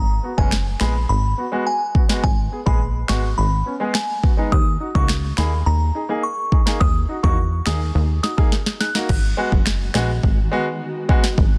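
A straight, bouncy dancehall groove in 4/4 rides on an up-front electronic kit of deep kick, sharp snare, rim clicks, finger snaps and crash, with a drum fill at 8.5 seconds, under a punchy, funky plucked analog bass, while a glassy FM synth bell with chorus and delay carries the melody until 8.9 seconds, a brilliant grand piano sustains the accompaniment, and a cloudy granular pad with sidechain pumping drifts in behind at 9.8 seconds, giving this tough cut from a longer piece a dense, heavily limited modern sound.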